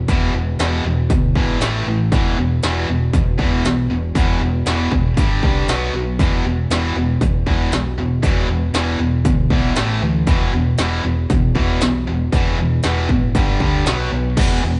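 An up-front industrial drum kit drives this heavy hard rock excerpt at 118 BPM in E minor, its produced, electronic sound built on a heavy kick, clanging snare, smooth hi-hats and crashes. Two bright, picked distorted guitars play riffs over E5, A5, G5 and B5 power chords, one overdriven and up front, the other tight, while a dark, round hollow-body bass, played with the fingers, holds the low end. The band plays live in one stone room with a moderate reverb and a dulled top end, giving the driving groove an enclosed feel.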